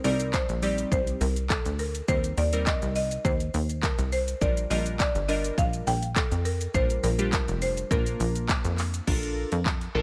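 A dry, close-sounding excerpt of upbeat, carefree dance-pop in Bb major at 103 BPM, with a punchy pop drum kit of kick, metallic hi-hat, handclaps, shaker and crash sitting up front alongside a plucky, funky analog bass whose sawtooth and square tones pump rhythmically. Glassy, warbling digital keys with a chorused shimmer and filter sweeps carry the chords from Cm7 through Eb6 and Bb6 to a closing Bbmaj7, also pumping in time. A woody, buzzing marimba played with medium hard mallets carries the airy melody through tape echo until it drops out at 8.5 seconds.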